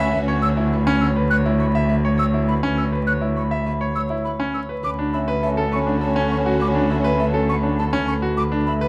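A straight triple-metre pulse drives this propulsive, bright slice of minimalist classical pattern music, where a brilliant grand piano and an airy, hollow silver flute spin arpeggios around a ringing harp melody over a distant bowed cello bass, while a clear French horn second line and a rich string section of sustained chords sound briefly at the start and return at 4.8 seconds, all set in a moderate large reverb with vinyl crackle.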